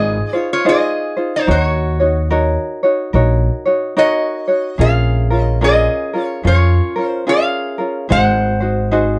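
Languid and relaxed, this brief Hawaiian excerpt drifts at 72 BPM in 4/4 with a swung eighth-note feel, moving through Dbmaj9, Ebm7, Bbm7 and Ab7. A bright, nasal metal-body resonator guitar carries the melody with slide and fingerpicks, over a light, fingerpicked tenor ukulele and a woody, thumpy pizzicato upright bass on gut strings, all three playing throughout the 9.2 seconds. The close, dry 1970s-style studio sound keeps every part up front with only light reverb.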